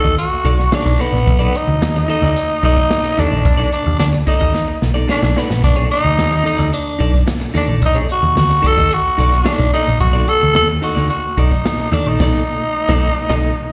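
Gritty and energetic, this funk excerpt at 110 BPM features a raspy, growling tenor saxophone up front with slapback echo over a twangy, compressed clean electric guitar that also carries slapback echo, a dark, foam-muted vintage picked electric bass, and an airy big-band drum kit with a punchy kick and crash, hi-hat and snare, all heard through a live club PA, with a drum fill at 4.5 seconds and a band accent closing at 12.2 seconds over a B7#9 chord.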